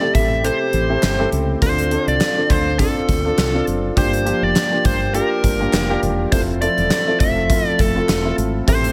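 A moody, urgent 1980s-style pop excerpt with a light swing, where a dark, smooth overdriven lead guitar carries the melody up front over a warm, polished baby grand piano accompaniment, a shimmering chorused pulse-width pad sustained in the background, a round, woody fretless bass, and a punchy gated 80s drum kit with an airy stone-room sound, while very quiet crisp group handclaps join from 1.0 to 8.2 seconds over a moving Am7, Dm7, Gm7, Fmaj7 progression.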